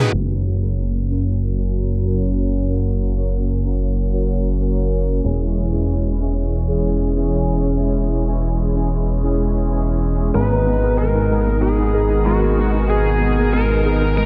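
A dark, high-gain lead guitar steps up front at 10.3 seconds with a distorted, picked melody trailed by tape echo, crowning this nocturnal, nostalgic synthwave excerpt at 94 BPM in straight 4/4. Beneath it, a glossy, nasal synth bass drives the low end, a thick, detuned unison pad holds bright sustained chords, and a fat, brassy analog synth brass fires mellow stabs through chorus, tape echo and slapback echo as the harmony moves from F# to C#m/E to G#madd9. A lo-fi, warbling pluck arpeggio flickers very quietly at the start and returns from 10.3 seconds, while the mix sits in a lush hall reverb with a big arena sound.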